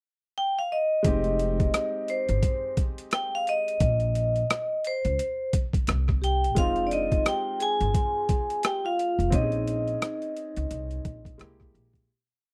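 A dark, ringing hard-mallet vibraphone carries a motif-based melody from 0.4 seconds in this nocturnal, mellow jazz-hop piece in F minor at 87 BPM with a swung sixteenth-note feel. From 1.0 seconds a woody pizzicato upright bass slides through a syncopated line, a warm concert grand holds smooth rootless chords with grace notes, and a gritty, overdriven, pitched-down boom bap kit lays a laid-back beat of thumpy kick, rim click and sixteenth-note hats. From 6.2 seconds a soft-mallet vibraphone adds a mellow octave-doubled second line over Fm9 and Bbm11 harmony, before the dry, close, vintage-style recording fades out to its end.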